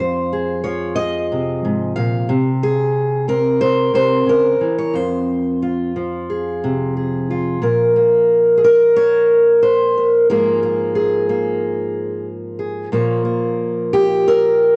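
Wistful and intimate, this folk piece features a lone fingerpicked steel-string acoustic guitar in F minor, moving at a steady 91 BPM in a straight 4/4. The guitar sits up front with a concert-like fullness, spanning from F2 up to F5, and finger squeak adds a close, human touch. Its tone carries the character of cassette tape, set in a small room with light reverb that gives the sound a homemade closeness. The harmony begins on Fm and C7, then shifts at 7.6 seconds into a second passage opening on Bbmadd9 before passing through Fm/Ab and settling on Bbm. Cut from a longer piece, the fragment runs 14.8 seconds.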